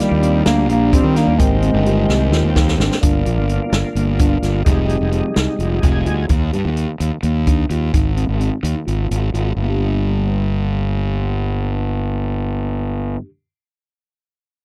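Progressive instrumental band music in 7/8 at 256 BPM in eighths, tense and brooding in G phrygian, opening with a soft-attack bass clarinet melody over a very quiet, close-miked trombone second line, both of which drop out at 2.8 seconds during a drum fill. A smooth tonewheel organ with chorus vibrato and slow rotary speaker adds its own fill before stopping at 6.3 seconds, while a clean tine electric piano arpeggiates in the background and an up-front acoustic jazz kit with a boomy kick plays until 9.5 seconds. Underneath, a growly, overdriven fuzz bass drives the chords from Ebmaj7 through Gm7 and Fm7 to Gm, all captured in a dry, close 1970s-style studio sound that cuts off mid-piece.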